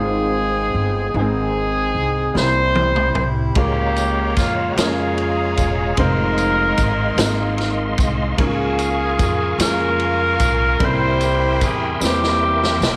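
A moderate spring reverb lends this fervent, solemn slow gospel excerpt in 6/8 a roomy glow. An up-front horn section with light vibrato carries the melody over a natural grand piano and a woody, thumpy pizzicato upright bass. A distant big-band drum kit with a punchy kick arrives with a fill at 2.4 seconds, followed by a reedy tonewheel organ with key click and fast rotary sitting in the background from 3.6 seconds, and a jingly tambourine from 4.0 seconds.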